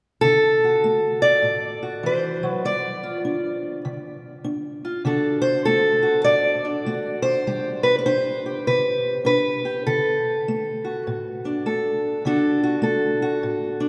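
Gritty and laid-back, this short excerpt of acoustic country blues moves at 100 BPM in 4/4 with a swung eighth-note feel. A single fingerpicked steel-string acoustic guitar carries the whole performance from 0.2 to 13.9 seconds, its boxy parlour tone sitting up front and ranging from A2 to D5. The harmony starts in D mixolydian on a D7 and a G5, then settles into D major from 5.1 seconds, moving between D and G chords. A cavernous cathedral reverb with a 4.4-second decay surrounds the guitar, giving the sense of a church or concert hall. The clip is cut from a longer piece.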